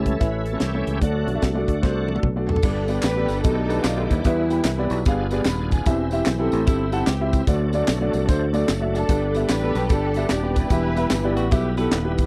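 A swung eighth-note groove in 4/4 drives this uptempo gospel excerpt, reverent and hopeful in mood. A bright tonewheel organ, lightly overdriven with chorus vibrato and a slow rotary speaker, opens with a short solo over sustained chords, and a drum fill leads into the main section at 2.6 seconds. Up front, a tight funk drum kit with a high-tuned snare plays alongside a growly, punchy fingered electric bass and a woody upright piano with long sustain playing accompaniment. Muted, veiled strings played con sordino with vibrato carry the melody in two short passages, first entering at 2.5 seconds, while tambourine, egg shaker and group handclaps sit in the background. A clean, compressed electric guitar adds a brief picked second line, and the recording has a dry, close 1970s studio sound.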